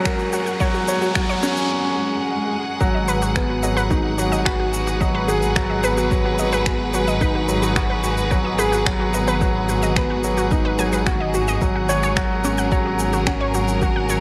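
Set in a moderate echo-chamber reverb, this cinematic, melancholic piano-and-strings electronica opens with an electronic riser and swell that build until the drop at 2.8 seconds. A soft, felt-muted upright piano plays an intimate riff up front, with audible action noise and delay, over distant, lush symphonic strings holding sustained, vibrato-rich chords and a rumbling, detuned saw bass that is high-pass filtered, both pumping under sidechain. Bright, wave-folded unison pluck arpeggios sit in the background with cassette-tape colour, delay and the same pumping, while an overdriven deep electronic kick, finger snaps and shaker, re-recorded in a large room, drive the groove.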